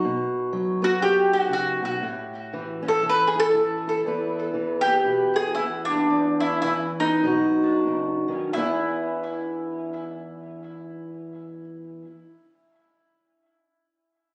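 Acoustic country blues for a small duo, this short passage cut from a longer piece has a rollicking, soulful mood in E major, swinging in 4/4 at a tempo that moves between 86 and 121 BPM. A fingerpicked steel-string parlour guitar, dark and boxy with audible finger squeak, carries the accompaniment from the start, sitting up front in the mix. A mellow, woody mandolin with doubled strings enters at 0.8 seconds to carry the picked melody, also up front and coloured by tape echo. The music slows between 4.0 and 8.5 seconds before a new section arrives at 8.5 seconds on an E chord. The whole is caught on a phone in the room with light studio reverb.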